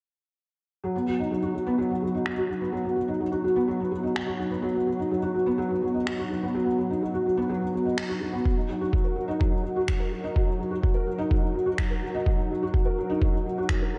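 A dreamy, reverb-soaked mix with a softened top end opens this cinematic piano and strings electronica cut, taken from a longer piece and moving at 126 BPM in a straight 4/4, with tuning set at A4 = 439 Hz. A felt-muted upright piano sits up front, playing a riff between F#3 and A#4 from 0.8 seconds. Its sound is soft, mellow and intimate, boxy in tone with audible action noise, and it is coloured by ensemble chorus and analog delay. Tape-warm electronic finger snaps join at 2.3 seconds, kept low in the mix, with a low-pass filter on the snare. At 8.5 seconds a pitched-down, compressed kick drum arrives up front, a muffled, thumpy sampler-style hit re-recorded in a small room, anchoring the moving, cinematic mood within the moderate plate reverb.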